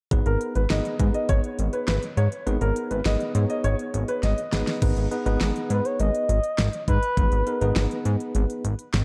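Dark, lightly reverberant production frames this nocturnal, melancholic synth-pop fragment, where a glossy chorused synth bass and a layered electronic pop drum kit with knocking kick, fat snare and crisp hats sit up front beneath a worn, slightly out-of-tune tine electric piano with light overdrive, while a natural baby grand piano with delay adds a second line until 4.6 seconds, a drum fill arrives at 4.2 seconds, and a smooth, expressive sawtooth-and-triangle synth lead with chorus, vibrato and delay carries the melody from 5.7 seconds.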